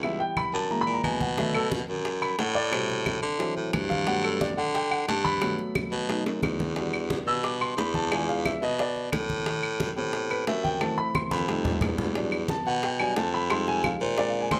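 Lively and sophisticated, this Afro-Cuban jazz excerpt moves at a brisk 178 BPM in a straight 4/4, centred in G major and cut from a longer piece. An intimate upright piano carries the solo from start to finish, its woody tone accompanied by audible action noise as it moves through rich jazz harmony such as Bm7, Gmaj9 and Em9. Beneath it, a growling baritone saxophone takes the bass role, sitting up front with a raspy, gritty, punchy bite and a touch of vibrato. Claves and congas play throughout, the congas bright and low-tuned with hard hands in a distant, large-room sound, and tight, high-tuned bongos join at 1.4 seconds, sitting in the background beside the woody claves. Drum fills mark the turn into the second pass of the phrase at 6.3 seconds and again around 11.1 seconds, all within a moderate studio reverb.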